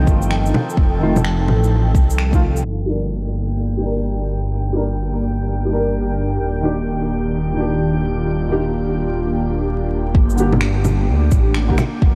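Rainy and wistful, this future garage excerpt moves with a swung 4/4 shuffle under a dreamy haze of huge ambient reverb, vinyl crackle and a low-pass filter. A felt-muted upright piano plays soft, intimate accompaniment with short sustain, bathed in lush chorus, diffuse ambient delay and sidechain pumping, while an airy, breathy pad holds sustained chords through chorus and phaser. Beneath them, a dark detuned saw bass rumbles up front with a deep, beating tone, pumping along with the piano and pad. A deep, layered electronic kick and a kit of electronic shaker, finger snaps, bongos and cabasa play only at the opening, with the kick returning at 10.1 s and the percussion at 10.3 s. In the sparser middle stretch, a faint glassy texture of drifting overtones hovers high from 3.5 s, as filter sweeps move over the piano and pad and the chords shift from G minor to E-flat major seventh.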